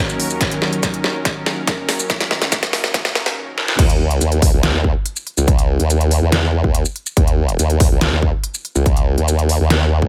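A half-time 4/4 groove at 142 BPM drives this chaotic, heavy wobble dubstep excerpt, where a lush, detuned supersaw pad holds an Ebm7 chord with sidechain pumping over a build-up of drum fills from a crisp, high-passed kit of crash, hi-hat, shaker and deep snare plus a punchy electronic kick, and after a brief break and the pad's exit, the drop at 3.8 seconds brings in an up-front, overdriven formant-sweep wobble bass with chorus on Dbsus2 as the drums continue and the kick runs to 10.1 seconds, all set in a high-passed digital ambience.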